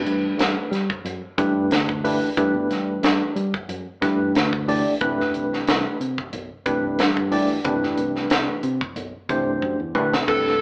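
Electric jazz fusion at 91 BPM in 4/4 with a light sixteenth-note swing, bright and soaring, built on a barky, clean tine electric piano that comps up front over Gadd9 and then Cmaj9 through its built-in speakers, joined by a punchy fingered bass and a crisp, airy drum kit with a high-tuned snare and punchy kick. A drum fill arrives at 9.6 seconds, and at 10.3 seconds a smooth, dark overdriven lead guitar sounds a picked A4 just as the clip, cut from a longer piece, ends. The band plays live in one room under a wet large studio reverb, with an AM radio coloring to the sound.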